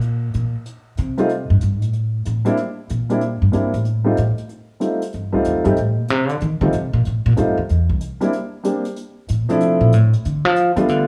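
Relaxed and playful, this swinging jazz piano trio excerpt moves at a brisk 188 BPM in 4/4, with a woody, pizzicato upright bass on steel strings taking the solo up front from the start while a hi-hat played with brushes sits mid-forward in a small room, its top gently rolled off. At 1.2 seconds a warm upright piano joins with long-sustaining melody notes, drifting through chords such as Gmadd9, F9 and C9. Light reverb adds a touch of studio ambience to this fragment of a longer piece.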